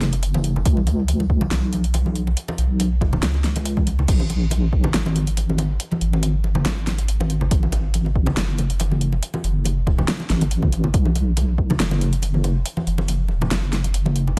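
Dark and heavy, this deep dubstep excerpt moves at 140 BPM in 4/4 with a half-time feel and a light 16th-note swing. A deep, soft wobble bass sits up front and carries the low end, its rounded sine-and-triangle tone compressed and sustained with a fast attack and a touch of chorus. A deep house drum kit runs throughout, its layered, tape-touched sound bringing a fat snare, metallic hi-hats and crash cymbal. Close, dry congas struck with hard hands add a ringing, medium-tuned acoustic texture, trailed by dub echo. A punchy, layered electronic kick comes in at 0.7 seconds, drops out, and returns at 7.5 seconds. The mix is dry with little reverb, and lossy compression artefacts are audible.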